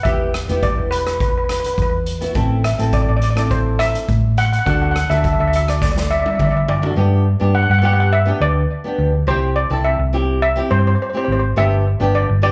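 A shimmering steel pan, played with hard rubber sticks and sitting up front with slapback and tape echo, carries the melody in this sunny, carefree calypso at 104 BPM in G major, heard as a short cut from a live club gig through the venue's PA. Underneath, a double-tracked, fingerpicked flamenco guitar adds a dark accompaniment with audible finger squeak, while a round, amped hollow-body electric bass holds the low end up front through an Em–Am–D to G–C–G progression. A boomy, airy street-band drum kit drives the first half with a drum fill from 5.8 to 7.0 seconds, then stops as the second section begins.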